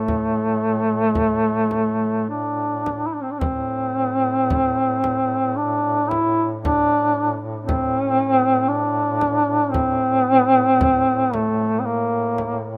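A warm, vintage-toned duduk sings a solemn, longing folk melody up front with vibrato and a soft attack, over a second duduk holding a distant, roomy drone, while a deep, close and dry frame drum struck with hard hands joins at 0.1 s, framing this rubato Caucasian lament in 3/4 within a lush hall reverb and a rough home-demo mix.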